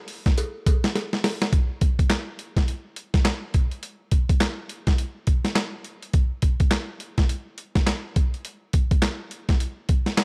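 A gritty, compressed boom bap drum kit opens this punchy, slick R&B excerpt, its thumpy kick, medium-tuned snare, hi-hat, handclaps and tambourine sitting up front with a swung sixteenth-note feel. A metallic acoustic cowbell sounds briefly from 0.4 to 1.4 seconds, and a drum fill at 0.9 seconds leads into the next section at 1.5 seconds. The dark production carries little reverb, keeping the sampler-style groove close and dry.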